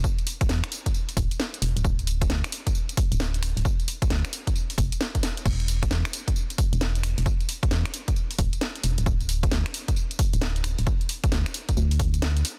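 Soulful and late-night, this short two-step UK garage excerpt at 133 BPM rides a swung 16th-note groove, with a hollow, dark, organ-like FM bass of fast attack and percussive decay sitting up front beside a punchy analog-style electronic kick, while a layered, tape-warm garage kit of cracking snare, hi-hat, finger snaps, tambourine and crash cymbal plays along, with a drum fill at 5.2 seconds, all wrapped in digital ambience and a dense, heavily limited modern master.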